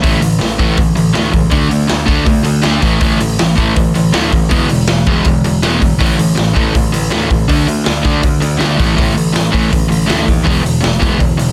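Punk rock, energetic and upbeat at 161 BPM in straight 4/4, built on two overdriven, picked semi-hollow guitars playing riffs over a chord cycle of A5, D5 and E, one dark and up front and the other warm and set back, while a bright, growly, direct electric bass sits in the background and a raw garage drum kit of hi-hat, boomy kick and medium-tuned snare sounds gritty and saturated with a pumping small-room character and rolled-off top, all four parts playing together across this 11.5-second excerpt cut from a longer piece under light reverb and a dense, heavily limited master.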